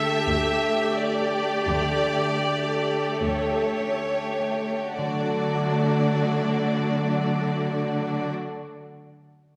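A rich violin section carries the tender melody up front with smooth, even vibrato in this slow, romantic excerpt for symphony orchestra, while a second violin line with a soft attack sits beneath it and lush violas add expressive portamento over a focused, smooth-topped cello bass. A ringing, fingerpicked concert harp weaves arpeggios throughout, and the rubato phrasing slows over the first 5 seconds on an A7 over D before settling onto D. The strings stop at 8.3 seconds, leaving the harp alone until 8.9 seconds, all bathed in a wet scoring-stage reverb.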